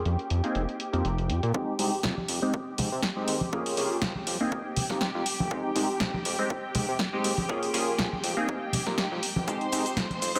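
A filtered disco house groove in F minor at 121 BPM opens with bright, biting studio strings holding sustained chords over a fat, detuned sawtooth bass, joined by a punchy analog drum machine with cabasa, hi-hat and snare and an up-front funky polysynth comp, warbling with chorus and phaser, all pumping with sidechain apart from the snare, before an electronic kick in the background and tambourine and congas enter at 1.5 seconds for a build-up with a filter sweep through Fm9, Bbm13 and Abmaj7/F, the nostalgic mix soaked in a lush hall reverb.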